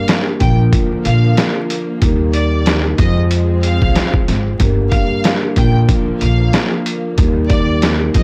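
Dark and tough, this 8.2-second boom-bap hip-hop excerpt at 93 BPM with a swung 16th feel pairs a muffled, pitched-down sampler drum kit with a thumpy kick and 12-bit grit, a woody pizzicato upright bass entering at 0.4 seconds with tube saturation, mellow soft-mallet vibraphone colored by cassette tape, a clear, focused violin section melody with analog delay, and lush background string chords over a Bb, Eb, Fm and Gm progression, all in a dry, gritty recording with transformer saturation and vinyl crackle.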